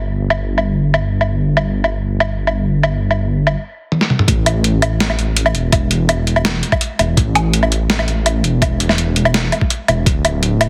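A rumbling, detuned sawtooth bass opens this dark, spacious half-time drum and bass excerpt, joined almost at once by an up-front, overdriven boom bap drum kit whose hi-hat, medium-tuned snare, toms and woodblock sit gritty and low-pass filtered. After a drum fill, the drop lands at 4.3 seconds, where an overdriven, thumpy electronic kick enters. Light reverb surrounds the mix, and heavy compression gives it a squeezed, radio-like sound.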